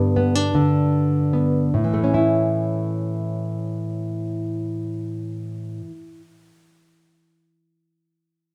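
Gentle and nostalgic, this short folk excerpt in A mixolydian moves at a slow 48 BPM in a straight 6/8, with a dark, full-bodied nylon-string guitar fingerpicked up front as accompaniment from 0.0 to 6.2 seconds, slowing down over the opening G chord before settling on A at 1.7 seconds, all set in a moderately large studio reverb.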